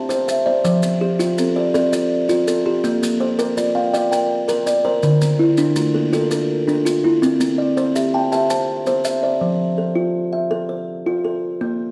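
The recording has a dark, warm production in a moderate recital-hall reverb that gives the plucked tones a lingering glow. It is a hypnotic excerpt of southern African traditional music, an mbira-style interlocking cycle in 12/8 at 110 BPM (dotted quarters) with a straight feel, in F major and tuned to A4 = 443 Hz. Two kalimbas play arpeggios from D3 to A5, both up front. One has a woody, hollow, boxy body and soft fingertip plucks. The other sits on a solid board, giving a mellow, airy tone with a buzzing ring. Grainy acoustic maracas sit close but lower in the mix, while the harmony moves through C, F, Bb, Dm and C before reaching F in a brief closing section; the buzzing kalimba stops at 9.8 s, and the plain kalimba carries on alone until 11.9 s.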